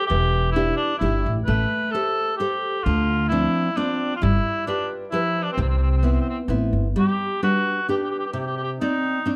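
A cor anglais sings the melody in a classical style with light vibrato and a roomy, distant character, opening this romantic, sunny Italian folk serenade in C major at 131 BPM in a flexible, rubato 3/4. A full-bodied, fingerpicked nylon-string guitar accompanies through seventh chords such as Em7, Dm7 and G7, while a woody pizzicato upright bass underpins the harmony until 6.9 s. The second section, from 7.0 s, settles on a closing Cmadd9, and the whole passage sits in light reverb captured by close, detailed microphones, a short cut from a longer piece.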